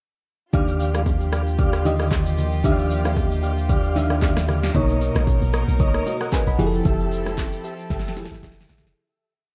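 Warm and soulful, this short amapiano piece rides a swung groove built around a bell-like FM electric piano with chorus and tremolo, playing push chord rhythms in spread voicings with grace notes and short fills, over a gut-string studio string section holding sustained chords and a percussive tonewheel organ firing short syncopated stabs through a fast rotary speaker and digital delay. Underneath, an up-front deep house drum kit pairs a steady shaker, soft kick and syncopated rim with handclaps and a punchy snare, while very quiet congas and bongos add a ringing vintage colour. A round sine sub bass holds sustained notes until 4.7 seconds, when a dark log drum bass takes over with syncopated, sliding bursts, and the dry, dark mix fades out from 6.9 seconds under a closing drum fill.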